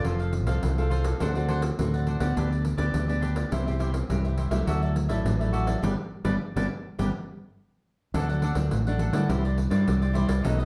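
Crisp, picked cavaquinho, fingerpicked classical nylon-string guitar and jingly, vintage-sounding pandeiro open this festive, joyful samba and choro excerpt, joined almost at once by a round, punchy fingered electric bass that sits dark and up front. The full band plays a shared accent from 5.8 to 8.1 seconds before the music moves into a new section. The whole ensemble is heard from further back in a large studio with a wet reverb.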